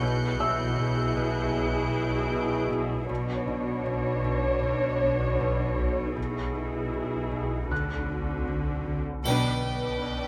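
A dark, woody viola section sits up front in this eerie, mysterious suspense film score, its sul tasto bowing joined by a bright, ringing concert harp riff, a floating cello section, a lush double bass section, a swarming, detuned drone with built-in reverb, a high symphonic violin texture that stops at 2.7 s, and a soft felt-muted upright piano. Warm studio violin lines then enter at 9.2 and 9.3 s, and a triangle joins at 9.3 s, for a brief accent as the harmony settles on G/B.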